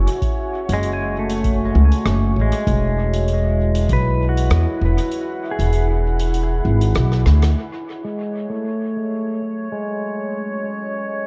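Ambient dub at 98 BPM in F# minor, meditative and hazy, cut from a longer piece, where a dark, detuned pad holds sustained chords over a woody pizzicato upright bass, a tape-warm electronic kick that drops out at 5.1 seconds, and a soft-mallet kit of hi-hat and rim click steeped in dub echo, while a clean, fingerpicked pedal steel guitar plays slide arpeggios through analog delay until a drum fill gives way at 7.6 seconds to filter sweeps on pad and steel and a glassy texture of drifting overtones entering at 8.3 seconds.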